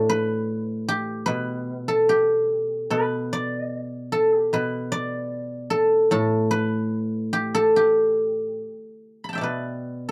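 Chinese traditional solo plucked-string music, serene and elegant, with a rubato feel and uneven beats in two. A lone acoustic guzheng, played with fingerpicks, carries everything from 0.0 to 10.1 seconds, its mellow, silvery tone ringing across a range from A2 up to B5. The sound is dry and close in the manner of a 1970s studio, the instrument up front, and the clip is cut from a longer piece.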